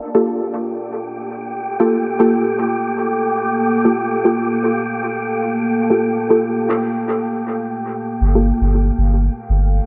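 Dub techno at 117 BPM in G minor, cavernous and nocturnal, opening on a Gm9 chord as mellow, nasal chord stabs with chorus, phaser and dub echo sit up front over a breathy, wind-like noise texture. A detuned, moody sawtooth pad with a sub octave and a slow attack enters at 1.9 s to hold sustained chords, and a moderate, lush hall reverb gives the room its sense of space. At 8.2 s the noise texture stops, a filter sweep runs over the stabs, and a round, soft sub bass arrives on G1 for the final seconds of this swung clip.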